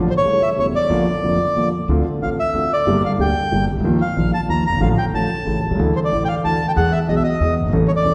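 A reverberant concert hall, with a 1.9-second decay and lossy compression artefacts, surrounds this short cut from a longer tango in D minor. The tempo is 185 BPM in 3/4, played with a rubato feel, and the mood is tense and sultry. A bandoneon carries the melody from 0.1 seconds, its reedy, dark, smooth tone sitting up front in a high register. A concert grand piano accompanies from the deep low end up to the middle, sounding intimate and vintage, with audible action noise. Beneath it, a pizzicato upright bass on gut strings gives a woody, thumpy pulse. The harmony moves through chords such as A7, Bb, Dm7, Gm, Ebsus2 and Dm/A before closing on E at 6.8 seconds.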